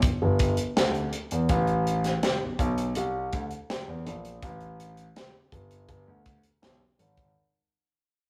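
A concert grand piano and a tight acoustic funk drum kit open together, the piano holding down the low end with a warm, deep bass line. This short fragment of lush 1970s-style soul carries a romantic mood over a straight, unhurried 4/4 feel. The drums sit up front with a high-tuned snare, a tight kick and hi-hat, their mid-forward tone carrying a small-room character. Both parts play through the whole passage, which fades out across its full 7.4 seconds. A moderate stone-room reverb and a rough, rehearsal-room quality give the recording a raw, intimate feel.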